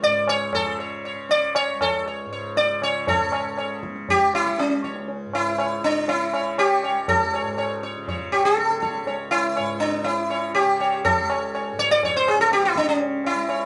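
Set in a straight 4/4 at 120 BPM that gradually speeds up, this short cut from a longer Hindustani classical performance in raga Todi on C# carries an introspective, longing mood. The up-front sitar, plectrum-plucked and buzzing with shimmering sympathetic strings, carries the melody across all 13.7 seconds, and the piece moves into a new section at 3.1 seconds. A mellow, softly plucked tanpura drone sits low and quiet beneath it, while low-tuned, short-ringing tabla with a vintage, band-limited character keeps time. The whole group is captured live in one room with a wet studio reverb.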